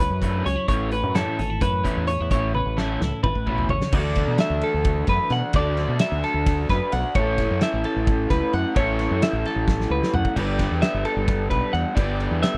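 Wistful and intricate, this math rock and midwest emo fragment in 7/8 pairs a clean, up-front twelve-string electric guitar accompaniment that stops at 5.6 seconds with twangy twelve-string arpeggios glinting in the background, a lo-fi, double-tracked overdriven garage guitar riff, a growling, round fingered bass, and a loose indie drum kit with a fat snare, dark cymbals and a pumping room sound, whose fills arrive around 2.5 and 9.7 seconds in a dry mix over chords moving from Dmaj9 through D69 to Gadd9.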